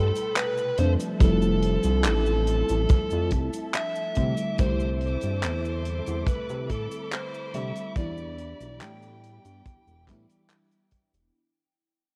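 Nostalgic and melancholic, this vaporwave fragment sets a dark, distorted fuzz lead guitar up front, roughened by 12-bit sampler grit and tape echo, over a dreamy FM electric piano with a soft pad layer treated with phaser and lush chorus. Beneath them sit a glossy, detuned synth bass with tube saturation, a dark symphonic string section bowing sustained chords with vibrato, and an acoustic studio drum kit of cabasa, handclaps and hi-hat joined by a punchy kick from 1.2 s. The rough, cassette-toned home demo mix carries a small-room ambience and begins fading out at 2.3 s.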